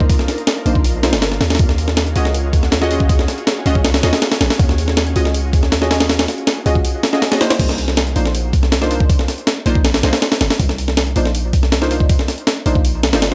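Up front, a compressed, gritty breakbeat kit with a thumpy kick, high-tuned snare, hi-hat and crash drives this atmospheric, nostalgic drum and bass excerpt, underpinned by a deep, boomy sine 808 bass with tube saturation and dark, full-bodied chord stabs smeared with chorus and dub echo over Cm11 and Ebm11 harmony, while an ethereal, warbling pad with vintage sampler grit sits in the background until 7.6 seconds.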